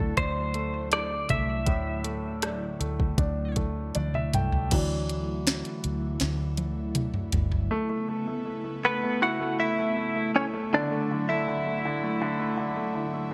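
A twangy, clean electric guitar carries the melody in this tender, emotional pop ballad excerpt, set against a clear, polished grand piano and a breathy, chorused pad that holds soft chords throughout. A round, dark fingered bass and an up-front R&B drum kit, with a sharp snare and gated reverb, drive the opening, and the piano takes a solo from 4.7 s. The bass and drums stop at 7.7 s, and the guitar returns at 8.8 s over the piano and pad in a bright 1980s-style production.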